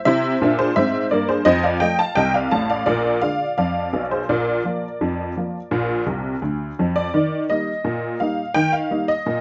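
Ragtime piano in Eb major at 85 BPM in a straight 2/4, cheerful and lively, played by a lone honky-tonk upright piano that sounds detuned, jangly and woody as it spans A1 to A5 and sits up front in a moderate studio reverb with a dulled, vintage top end. The harmony moves through C7, F7 and Bb7 to Bb before a piano fill at 6.1 s leads into a new section landing on Eb at 7.1 s. The clip is cut from a longer piece and stops at 9.4 s.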